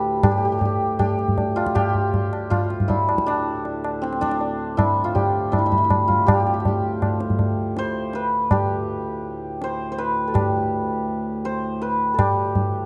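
Hindustani classical music in raga Bageshri on D, longing and introspective, moves at 161 BPM in 4/4 and gathers speed throughout this short cut from a longer piece, with a shimmering, ringing santur carrying the melody up front between C4 and C5 over a reedy, breathing pedal harmonium drone on D2 to A2, while a low-tuned, close and dry tabla enters at 0.2 seconds, all captured by detailed close microphones in light reverb.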